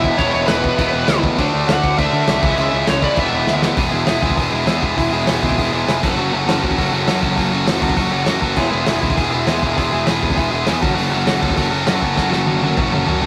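An up-front, double-tracked distorted electric guitar drives this energetic, rowdy punk rock excerpt at 200 BPM in 4/4, moving from E mixolydian into E major over chords of E, D, C#m and F#m. A smooth, bright overdriven lead guitar carries a short melody until 3.6 s, while a growly fuzz-driven picked bass and a loose indie drum kit with dark cymbals and a tight kick play throughout, with drum fills at 3.5 s and from 12.2 s to the end. The rough rehearsal-room sound carries moderate studio reverb.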